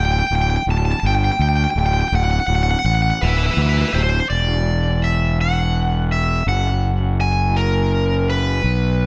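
Set in a digital ambience, this euphoric, soaring post-rock excerpt in 6/8 pairs a bright, crunchy overdriven guitar carrying the up-front melody with slapback echo, and a punchy fuzz fingered electric bass, played through overdrive and sitting slightly louder, as the harmony moves from Dadd11 to Dadd9/E at 4.3 seconds and lands on F# at 6.5 seconds.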